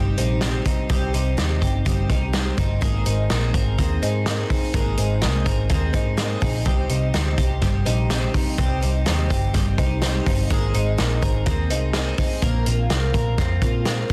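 A bright, shimmering twelve-string acoustic guitar, picked with audible finger squeak and an octave-doubled ring, opens this wistful, restless slice of jangly indie pop. Beside it, a clean, twangy twelve-string electric guitar plays compressed arpeggios colored by phaser. A dark, round, foam-muted electric bass sits up front from the start, and a loose acoustic drum kit joins at 0.2 seconds with a punchy kick, a medium-tuned snare and hi-hat, its rolled-off top giving it a mellow studio-room character. The harmony moves in a straight four-four feel from Cm to Abadd9 and back again, landing on Bbsus2 at 12.4 seconds. The two guitars sit behind the bass and drums in the balance, while a dry sound and a dense, heavily limited modern master keep the music close and compact in this clip cut from a longer piece.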